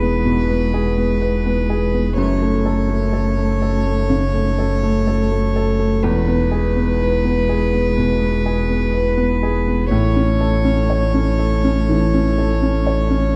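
A felt-muted upright piano sits at the heart of this tender, intimate neoclassical piece, its boxy, mellow tone and short sustain carrying audible action noise as it accompanies throughout the 13.4-second passage. Above it, a single bowed violin plays the melody sul tasto with a soft attack, sounding pure, floating and distant. A lone cello plays a second line in the background, dark and woody with a nasal edge and vibrato, also bowed sul tasto but placed close. Underneath, an up-front sub bass with an octave gives a deep, full foundation, while a very quiet, warbling tape-like pad holds nostalgic, lo-fi sustained chords with chorus and a detuned warble. At a rubato 62 BPM in 4/4 and E major, the harmony moves from E to F#m, back to E, then to A, all within a moderate scoring-stage reverb and a dark, warm production.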